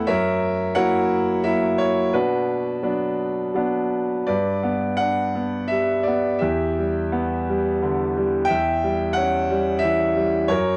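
A bright concert grand piano carries this brief classical fragment alone, a lyrical solo cut from a longer piece and heard from 0.0 to 10.8 s. Its tone is brilliant and open, with deep bass beneath long, ringing sustain, and it sits up front in a small room with moderate reverb. The mood is moody and brooding, moving in a rubato triple metre that lets the phrases breathe freely. The harmony passes from F#7 to Bm, then shifts at 4.3 s into a new passage that moves through G and Em7 before settling on C#dim/E. The fragment was captured as a home recording on cassette tape.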